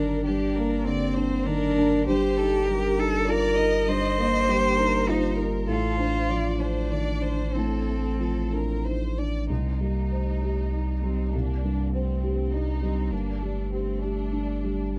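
In a rubato 3/4 at 99 BPM, this neoclassical piece for piano and strings unfolds in C dorian, tuned slightly below standard pitch, with a longing, fragile mood. A felt-muted upright piano carries the accompaniment throughout, its thick felt giving a mellow, intimate sound, while a pure sine sub bass sits up front beneath it, deep, smooth and sustained. Over this, a clear chamber violin section sings the melody with intense vibrato, placed somewhat lower in the mix than the other parts. A single cello weaves a second line, rich and expressive, with a soft attack and portamento. The harmony moves from Gm through Cm7/G and F6/A, and a new passage begins at 9.5 s on Cm7 before arriving on G5 at 13.1 s. The small room reverb and rough home demo mix lend a close, unpolished feel to this fragment cut from a longer piece.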